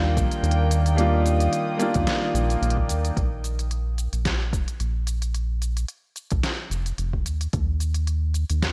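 Sunset chillout in Bb major at 110 BPM with a gentle 16th-note swing, this smooth, warm excerpt opens on an Ebmaj7 chord voiced by a boxy, up-front concert grand piano with digital delay and an airy, breathy pad with chorus, both falling away just after 3 seconds. A round, dark analog bass holds down the low end throughout, while from 0.2 s an overdriven electronic kick with a deep thump and a smooth R&B kit of deep snare, silky hi-hats and shaker carry the groove into a sparser Bb5 passage at 3.2 s. The whole mix sits in light reverb and digital ambience, colored by worn, warbling cassette tape with pitch drift.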